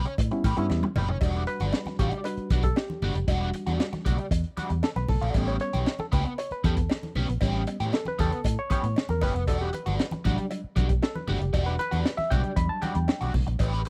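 A barky, lightly overdriven reed electric piano with phaser takes a solo from 1.2 s in this hypnotic, driving funk cut at 116 BPM in E dorian, over gritty, saturated breakbeat drums with a high-tuned snare and tight kick that play a fill at 0.7 s, a round, foam-muted fingered bass, a crunchy guitar with wah and phaser, low-tuned congas and a metallic cowbell in the background, all within a dry, close 1970s-style studio sound as the chords move between A9 and Em9.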